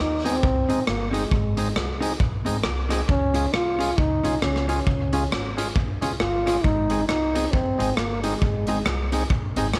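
A swung, bouncy ska groove in 4/4 rides on a raw garage drum kit of punchy kick, hi-hat and rim click, gritty and saturated with tape echo in a bright stone room. A woody, thumpy upright bass and a dark, clean hollow-body jazz guitar in the background support percussive stabs from a lightly overdriven tonewheel organ with key click. A mellow trombone carries the solo melody with vibrato and scooped notes, and a crisp, very quiet group handclap joins at 7.1 seconds in this upbeat excerpt cut from a longer piece.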